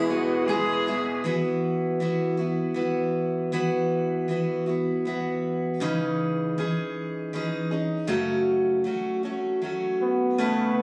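Pastoral and warm, this cut from a longer acoustic folk piece in E major moves at an unhurried 79 BPM in 3/4, with a bright, full-bodied picked steel-string guitar up front carrying the accompaniment throughout while, in the opening 1.2 seconds, a mellow flugelhorn with light vibrato, a nasal, boxy bowed cello with portamento, a second fresh-stringed guitar picking arpeggios and a soft reed organ with tremulant sound together, before the flugelhorn returns at 10.0 seconds and the organ at 10.4 seconds over a room-captured, compressed sound with moderate club-like reverb, the chords drifting from E through Esus2 and C#madd9 to F#m.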